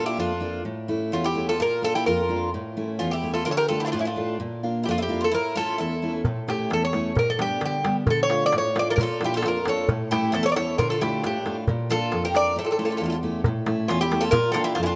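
Moody and cool, this Greek folk excerpt in 2/4 gathers pace throughout as a bright, metallic lead bouzouki with double strings sits up front over a warm second bouzouki line that drops out briefly, a full-bodied, up-front jumbo steel-string guitar picks the accompaniment, and a crisp, close metal-shell darbuka played with soft hands enters at 6.2 seconds, the band bathed in a moderate plate reverb before a short break at 12.6 seconds.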